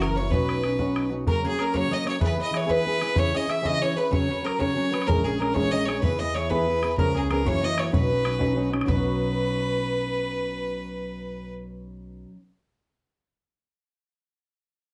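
Heard from further back in a reverberant studio with the top end rolled off, this lively, bright Celtic jig in B major at 126 BPM in 6/8 sets a clear, earthy, plate-reverbed fiddle with light vibrato up front over a boxy, fingerpicked swing-style acoustic guitar and an open, boomy bodhran, while a picked bowl-back mandolin and a very quiet, nasal gut-string second fiddle sit in the background and a woody, thumpy pizzicato upright bass drops out after 1.2 seconds and returns at 5.1 seconds, all within a short cut that moves through chords such as Badd9, A#m7b5 and C#7.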